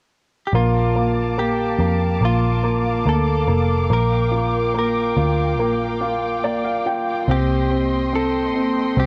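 The home cassette sound and light reverb give this hopeful, tender pop fragment a homely feel, as a clean, direct electric guitar with subtle chorus carries the melody over clear, polished baby grand piano accompaniment, smooth bowed strings with light vibrato, and a round, dark, foam-muted picked bass up front, with the piano adding a brief fill at 6.0 seconds as the harmony moves from Bbmaj7 through Gm7/Bb to Cm7.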